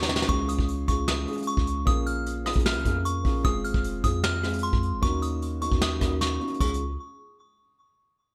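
Opening on a fill from a vintage brush drum kit with a punchy kick, shadowy cymbals and a pumping gated room sound, this dreamy, wistful half-time hip hop and trap excerpt at 152 BPM in Db major sets a delicate, tinkling FM synth tine bell melody, washed in chorus and delay, over a mellow, intimate concert grand piano with audible action noise and a boomy, clean sine 808-style bass, framed by bright 1980s-style digital production and plate reverb across a Db, Bbm7, Fm, Ebm7 progression.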